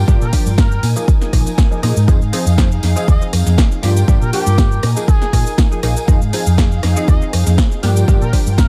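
An overdriven, up-front electronic kick and a round, hollow-body fingered electric bass drive this funky, nostalgic filtered disco house cut at 120 BPM in F dorian, alongside a tape-warm analog drum machine with punchy snare, hi-hat, rim click and shaker, and a background tambourine, while a nasal, detuned polysynth comp with chorus, phaser and tape echo, a dark string section playing soft-attack sul tasto chords, and a veiled cup-muted trumpet section carrying the melody from 0.2 seconds all pulse with sidechain pumping over Gm7, Bb7sus4 and Fm7 chords in an echo-heavy small-room mix.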